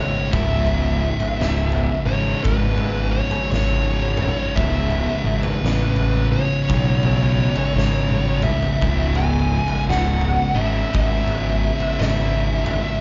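A slow, swung 4/4 pulse drags this brooding, heavy slice of stoner and doom metal along, sitting on a single C# minor chord throughout. An oversized, low-tuned acoustic kit of kick, snare and toms comes in at 0.3 seconds, its fat snare and punchy kick saturated and gritty in a bright stone room that pumps, set in the background, with a drum fill from 7.8 to 8.8 seconds. Up front, a round, overdriven fingered electric bass carries the low end with a dark, direct-and-amped fuzz tone. Two thick fuzz guitars play a picked riff in the low register, one with distortion and slapback echo in the background and the other very quiet. Above them, a dark, distorted fuzz lead guitar picks out a melody, coloured by slapback echo and analog delay. The whole passage is heard as a live gig through the venue's PA, with light club reverb and a muffled top end that adds to the murk.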